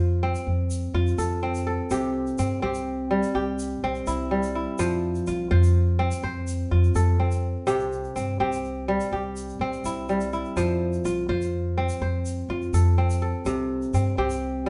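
A live band plays together in a stone room with a reverb that lingers about a second, and the top end is softly rolled off in this joyful piece of West African traditional music, lifted from a longer performance and moving at 83 BPM in a straight 12/8 in F major. Up front, a fingerpicked kora rings out in crisp, ringing arpeggios over a woody, thumpy pizzicato upright bass on steel strings, the two alternating between F and C throughout. A grainy, bright tube shaker sits much lower in the mix, its compressed, saturated texture entering at 0.4 seconds and carrying on until 14.4 seconds.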